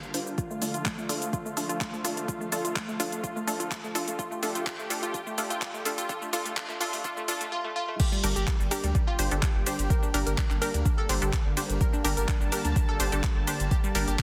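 An up-front, overdriven electronic kick drum enters at 0.4 s and anchors this dreamy, emotional progressive house passage in G minor at 126 BPM in straight 4/4, cut from a longer piece. Beneath it sits a deep, saturated sine sub bass, while an overdriven deep house kit, re-recorded in a small room, adds cabasa, handclaps, hi-hat, ride and crash cymbal. A glassy, crystalline wavetable pluck spins arpeggios through chorus, tape echo and vintage 12-bit sampler grit, and a punchy, detuned sawtooth unison pluck plays stabs with its own tape echo. Both plucks carry filter sweeps through a build-up that gives way to a drop at 8.0 s, where the harmony moves from Dm/G to Gm. A slow-attack, warbling vintage pad holds bright, thick sawtooth chords with chorus. Sidechain pumping moves the pad, both plucks and the bass, all set in a moderate digital room reverb under a dense, heavily limited modern master.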